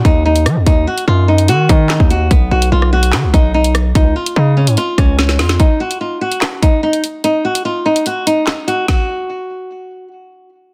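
A half-time drill groove at 146 BPM drives this menacing, tense hip hop cut from a longer piece, with an electronic kit of hard-clipped kick, woody snare, rim clicks, handclaps and hats placed up front. Over Ebm, B and Db chords, a bright, fingerpicked acoustic flamenco guitar carries the melody with audible finger squeak, softened by a low-pass filter and digital delay, while a heavy, aggressive distorted 808-style bass with a noise layer and fast attack drops out at 5.6 seconds after a drum fill. The drums stop at 9.0 seconds, leaving the guitar alone in light digital ambience, all within a dense, heavily limited modern master.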